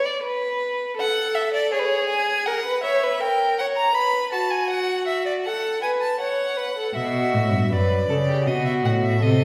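A serious, driving baroque-style fugue for string quartet, cut from a longer piece, opens with a rich, focused violin on the second line, joined at 1.0 seconds by a second violin carrying the melody with vibrato, a soft attack, expressive portamento and bowed tone, before a clear, smooth and even cello enters on the bass at 7.0 seconds, all set back in the generous reverb of a recital hall.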